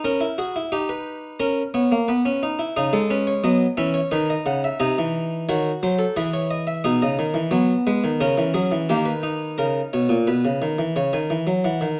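A solo harpsichord, Italian in style with a single set of strings, sits up front and sounds airy, round and plucked as it carries this solemn, contemplative three-part fugue in C# minor, cut from a longer piece. The baroque-style counterpoint moves at 88 BPM in a straight 3/4 across a range from A#2 to G#5, tuned to A4 = 437 Hz, and a new section begins at 11.0 s on a C# minor chord. Close, detailed microphones capture the instrument within a moderate, large studio reverb.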